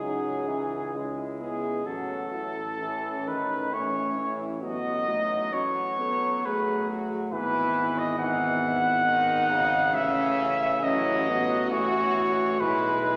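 A lush concert-hall reverb surrounds this short classical excerpt for brass band, a tender, hymn-like passage in 3/4 at about 67 BPM that moves with a gentle rubato through chords such as C#m, A, B7/A and E/G#. Up front, a flugelhorn with light vibrato sings the lyrical melody, sounding distant and roomy, while a French horn section carries a second line in the background. A brilliant trombone and a mellow, smooth-topped euphonium fill out the accompaniment above a warm tuba bass, all playing together from 0.0 to 13.2 seconds.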